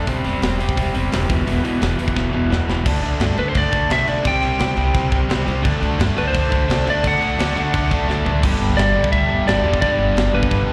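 A slightly broken-up lead guitar melody enters at 3.4 seconds over an upbeat, rebellious 172 BPM punk rock excerpt in G major, driven by a bright, compressed overdriven electric guitar riff, a lo-fi garage guitar, a woody pizzicato upright bass up front and a tight drum kit with a high-tuned snare and drum fills, while a double-tracked sludgy distorted guitar joins in the background at 5.6 seconds, all sounding like a live gig heard through the venue's PA with recital hall reverb.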